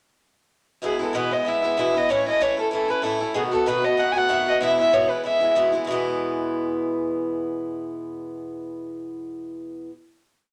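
A lively, rollicking Celtic reel opens with a bright, picked acoustic guitar strumming swung eighths in open chord shapes, joined almost at once by an up-front, dark and woody fiddle with light vibrato playing a motif-based melody in sentence phrases until 5.5 seconds, while the guitar carries on through E, A and B7 to a final chord that rings in a small room with moderate reverb until 9.9 seconds.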